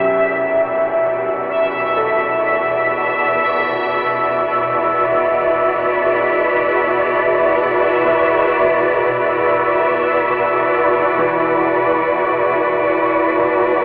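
Unfolding in free time, this dark ambient drone excerpt feels ominous and dark, drifting through a vast, echoing space that carries a narrow, telephone-like tint. Up front, a muted symphonic cello section plays lush, veiled, bowed sustained chords with vibrato, fading in over the first 11.2 seconds. Beneath it, a swarming, tense drone of detuned sine tones slowly evolves with a moving notch and a grainy, granular grain. Above, a bubbling texture of resonant, detuned sawtooth tones with chorus jumps through random filter steps until it stops at 11.2 seconds, leaving the closing passage to the strings, drone and piano. Far in the background, a clear concert grand piano with deep bass plays arpeggios through a tape echo.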